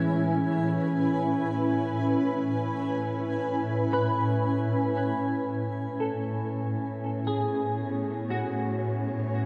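A cloudy, evolving granular pad sits up front with blurred, full-bodied sustained chords bathed in shimmer reverb, while a clean hollow-body electric guitar plays fingered arpeggios through ensemble chorus, delay and shimmer, and a lush bowed cello section with smooth vibrato enters in the background on a bass note at 5.6 s, the serene, peaceful ambient excerpt from a longer piece set within a vast, echoing cathedral-like space.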